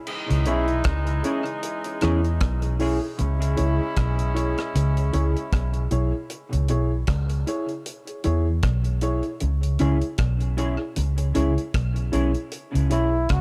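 A swung 77 BPM dub reggae groove in C# minor, heavy and spacious, rests on a dry acoustic drum kit with a tight kick, crash, hi-hat and rim clicks and a round, foam-muted electric bass sitting up front, while a very quiet fingered electric guitar riff, a hollow-body semi-hollow guitar washed in chorus and tape echo, and woody, slightly detuned upright piano stabs with audible action noise fill the small, dark room, as a distant horn section with light vibrato drifts through tape echo until 5.9 seconds and a bright, punchy trombone darts in briefly before returning at 12.9 seconds in this cut from a longer piece.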